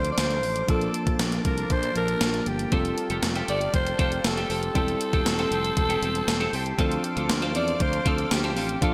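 A raspy, gritty alto saxophone carries the melody up front, its vibrato-laden pop tone bathed in shimmer reverb in this glossy, romantic slice of 1980s-style pop. Beneath it, a gated digital drum machine drives a straight 4/4 groove with a thumpy kick, an overdriven gated-reverb snare, hi-hat and tambourine, all sitting close and forceful in the mix. A growly fretless electric bass sustains low notes, while a bell-like tine electric piano chimes quietly in the background through subtle chorus and shimmer reverb. A thick, warbling unison pad of detuned sawtooth and square waves swells in slowly and holds long chords with a vintage sheen. After the opening Dm7 and Bbmaj7, a compressed twelve-string electric guitar joins at 2.7 s with a picked, chorus-drenched riff, moving over Fadd9 and Am7/E and back to Dm7. The bright digital production is wrapped in a lush hall reverb, and the passage is cut from a longer piece.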